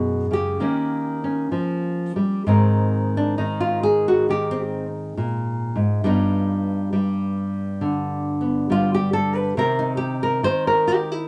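A fingerpicked, up-front nylon-string guitar carries this short, swinging solo jazz fragment cut from a longer piece, moving at a loose, rubato 68 BPM in 4/4 with a warm classical tone through chords like F#9sus4, D#7 and Abadd9 before a solo passage from 2.5 seconds settles on Cm at 9.6 seconds, all captured in a dry, close 1970s-style studio sound with moderate booth ambience.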